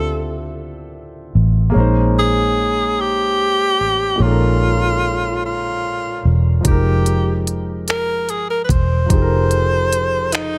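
Slow, sultry six-eight R&B at 49 BPM with a late-night feel, in which a breathy tenor saxophone sings a jazz-style solo with vibrato and scooped notes over an intimate concert grand piano with audible action noise and deep bass, a dark, round, foam-muted electric bass sits up front, and a produced drum kit of finger snaps, smooth hi-hat and knocking kick joins at 6.6 seconds, all captured in a dry sound across a brief cut from a longer piece.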